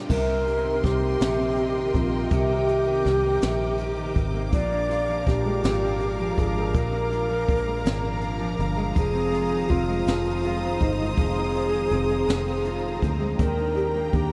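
A breathy alto flute with a wooden headjoint carries the melody, tongued and expressive with a gentle vibrato, its line trailing into a diffuse ambient delay. This is a swaying, heartfelt six-eight pop ballad at 54 BPM in dotted quarters, and the clip is cut from a longer piece. Underneath, a double-tracked nylon-string guitar is fingerpicked in a classical style, while a round, foam-muted fingered electric bass plays direct and amped. A lush, focused studio string section sustains bowed chords with vibrato, and a jazz brush kit sits in the background with a high-tuned snare, boomy kick, hi-hat and crash. The harmony moves from Cm7 to Bb7 at 4.5 seconds, Fm7 at 9.0 seconds and Ebmaj7 near the close, all bathed in a huge, dreamy reverb with a 7.1-second tail.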